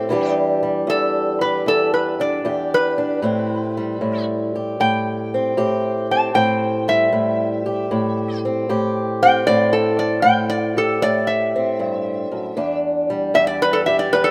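A metal-body resonator guitar played with a steel bar carries the melody across this 14.3-second excerpt of acoustic country blues, its metallic, nasal slide tone sitting up front in the upper register. Beneath it, an old ladder-braced acoustic guitar is fingerpicked with old strings, giving a woody, boxy accompaniment that spans the low and middle range. The mood is brooding and smoky, with a swung eighth-note feel in 4/4. The harmony moves from Em7 to Am7 at 3.2 seconds and returns to Em7 at 12.6 seconds. A moderate plate reverb with a long tail surrounds both guitars, lending the close, intimate pairing a lingering sense of space.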